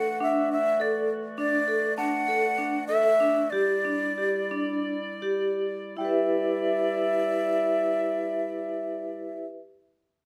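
A breathy flute carries the melody up front with a straight, soft-attacked tone over sustained chords from a mellow woodwind section and ringing vibraphone arpeggios with a fast motor vibrato, while a delicate, bell-like celesta adds sweet texture in the background from 0.2 seconds. This hypnotic, pensive chamber piece in 7/8 and E minor, taken from a longer work, moves from D/E to Em7 at 3.5 seconds. The tempo slows between 1.4 and 6.0 seconds before a second section begins, all set in a wet studio reverb.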